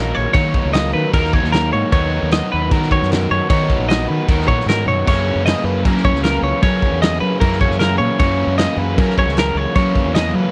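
A twelve-string electric guitar plays clean, twangy, compressed arpeggios up front as a double-tracked, overdriven semi-hollow guitar picks out a riff over a fuzz-soaked, overdriven fingered bass, with a loose indie drum kit of fat snare, punchy kick and dark cymbals entering at 0.3 seconds and adding a fill at 4.9 seconds while the harmony moves from D#m7 to F#7, giving this intricate, bright math rock and midwest emo excerpt at 153 BPM a dry, close 1970s-style small-room sound.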